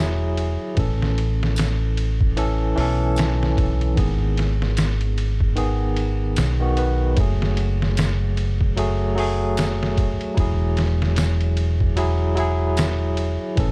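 A round, punchy fingered electric bass sits up front in this melancholic, smoky trip hop excerpt alongside a barky tine electric piano whose tremolo, tape echo and 12-bit sampler grit color its chords as they move from Eadd9 through A, G#m and F#madd9. A compressed, pitched-down sampler-style drum kit with a thumpy kick and medium-tuned snare enters at 0.4 seconds with a swung sixteenth feel, and a ringing tambourine arrives at 1.6 seconds in the background. The production is dark and warm, with small room ambience around the drums.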